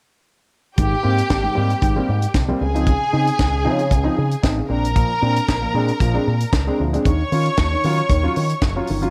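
A clear, smooth bowed string section with vibrato sits up front in this celebratory, glamorous disco excerpt at 115 BPM in Ab major, playing a second line from 0.8 to 8.8 seconds over chords moving from Abmaj7 through Dbmaj7 and Bb7 to Ebm7. A tight funk drum kit with a high-tuned snare and a tight kick drives the straight 4/4 feel alongside a fingered electric bass colored by an envelope filter. An intimate grand piano, with audible action noise and long sustain, fills in the accompaniment, all under a light reverb.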